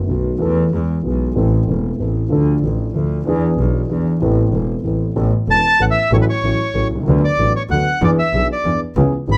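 A nostalgic, elegant tango excerpt in 3/4 at 189 BPM, played with a rubato feel and cut from a longer piece. A dark, mellow concert grand piano carries the accompaniment with deep bass and short sustain, while a bowed double bass, clear and intense with light vibrato, holds the low end, both placed up front from the opening. The harmony moves in A harmonic minor through chords such as Esus4, Am, Dm and E7, then turns to A major at 5.2 s with Aadd9, F#m7/A and D6 before landing on E7. At 5.5 s a reedy, vintage-toned bandoneon enters up front with the melody in a high register, its band-limited sound giving the close, detailed recording an old-world character. Light reverb leaves the small ensemble intimate and present.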